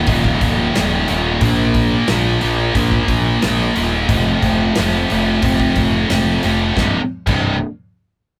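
The guitar opens the clip at 0.0 seconds: a scooped, high-gain, double-tracked electric part, bright and up front, picking a distorted riff in C minor at 90 BPM in a straight 4/4. A fuzz-laden picked electric bass joins almost at once, growly and overdriven, holding down the low end and sitting just as forward in the mix. A modern acoustic studio drum kit drives the groove with tight kick, medium-tuned snare, hi-hat and crash cymbal, its sound airy and polished compared with the grittier strings. The power-chord progression moves through Eb5, Bb5 and F5 before landing on C5 at 6.8 seconds as the piece shifts into a new section, giving this cut from a longer heavy metal track an epic, dark weight. The whole thing carries the rough feel of a rehearsal-room take, set in a moderate booth ambience with a short decay.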